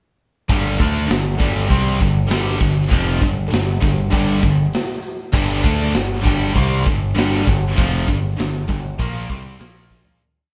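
A short, menacing hard rock piece in G minor at 99 BPM kicks in at 0.5 seconds with the full band at once, playing live together in a stone room with a moderate reverb. Two double-tracked electric guitars drive a picked power-chord riff, one overdriven and bright, the other a scooped, high-gain tone. A growling, overdriven electric bass, picked and driving in eighth notes, doubles the guitar riff down low. The tight metal drum kit sits up front with a big, airy room sound, bright cymbals, a medium-tuned snare and a tight kick, pushing a straight, aggressive groove. The riff rests on G minor before landing on a Bb5 chord at 9.6 seconds, as the piece fades out from 7.8 seconds and a drum fill from 9.9 seconds closes it at 10.2 seconds.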